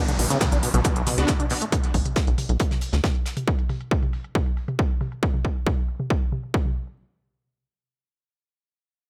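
Dark, industrial peak-time techno at 137 BPM in B minor, this short cut from a longer piece opens on a tight, nasal sequencer bass and a squelchy, resonant acid saw riff, both pumping alongside an overdriven electronic kick that sits up front from 0.4 seconds. A brief, thick detuned rave stab flashes in the background, while a downlifter falls away and a dry, damped acoustic kit with a rolled-off top trails behind the layered techno drums, whose smooth hats and toms are run through a filter sweep. The drums drop out at 7.0 seconds, leaving the digital ambience to hang over an unharmonised tail.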